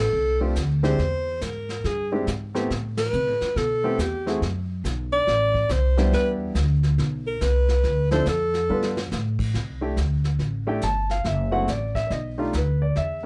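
A swinging 4/4 pulse at 140 BPM drives this relaxed small-group jazz piece in C major, with its eighth notes given a light, easy lilt. Upright bass starts at once, plucked and woody on steel strings, and brush drums follow at 0.1 seconds, their kit dark in the cymbals, punchy in the kick and rolled-off at the top. A clear alto saxophone carries the tune up front from the opening, its tone soft in attack and touched with vibrato, while a clear baby grand piano with short sustain joins at 0.4 seconds to comp through rich chords such as Am9, Em7, Dm9 and G9. The band hits an accent together at 2.9 seconds, and a short drum fill leads into a new section at 9.5 seconds, where the saxophone has already fallen away and piano, bass and brushes carry on over C69, F#m7b5 and B7alt. Light reverb places the group a little further back in the room, giving the cut an intimate, mellow glow before it breaks off.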